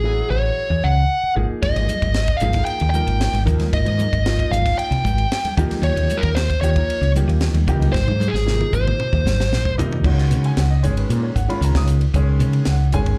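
Funky and slick, this electric jazz fusion excerpt moves at 114 BPM in a straight 4/4, heard live through a club PA with little reverb. An overdriven, picked lead guitar with slapback echo carries the melody up front until 9.7 s, over an open baby grand piano with long sustain and its own slapback echo, a dark, round, punchy fretless bass thickened by ensemble chorus, and very quiet, ringing congas played with soft hands. A dry funk kit with bright cymbals, a high-tuned snare and a tight kick enters at 1.6 s and plays a fill leading into a closing passage in Db mixolydian at 10.0 s.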